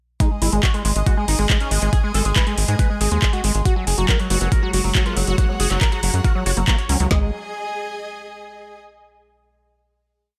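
A short, alien psychedelic trance piece at 139 BPM opens at 0.2 seconds with a knocking four-on-the-floor kick and woody snare, metallic hats and claps from an overdriven garage kit, a squelchy acid line looping in three steps against the bar, a screaming, guitar-like lead repeating a sixteenth-note riff over a pedal note, and intense bowed strings. A galloping sixteenth-note sequencer bass enters at 0.4 seconds, while a morphing wavetable pad drone and a very quiet nasal wobble bass join near 4.4 seconds before the strings hold a final G#5 chord from 7.1 to 8.8 seconds.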